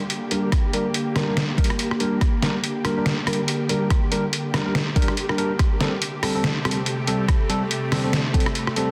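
Dense, heavily limited and lightly reverberant, this dark, heavy deep dubstep excerpt at 142 BPM in G minor has a swung half-time feel and builds over its 8.9 seconds from Gm to Am7, as a tense, sawtooth-edged bowed-like drone and a very quiet, flickering granular texture sustain beneath gritty, pitched-down trip hop sampler-style drums, a deep layered electronic kick up front, and chorused, dub-echoed tine electric piano stabs carried through a filter sweep.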